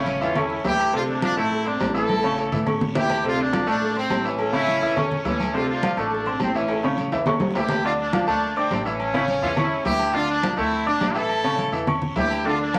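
A driving, fiery salsa groove in straight 4/4 at 209 BPM rolls along on bright, damped congas, ringing metal timbales and agogo bells, a raspy vintage guiro in the background, and a very quiet, distant pair of low-tuned cowbell and bongos, with drum fills spicing up the turnarounds in D minor over a steady alternation between A7 and Dm7. Up front, a tight, bright trumpet section carries the melody with light vibrato and a soft attack, while a brilliant, worn, slightly detuned upright piano comps alongside, a woody pizzicato upright bass with gut strings thumps underneath, and a clear, punchy, roomy saxophone section adds a brief second line at 0.0, 4.5 and 9.1 seconds. A wet studio reverb and a layer of vinyl crackle give this fragment of a longer piece a vintage sheen.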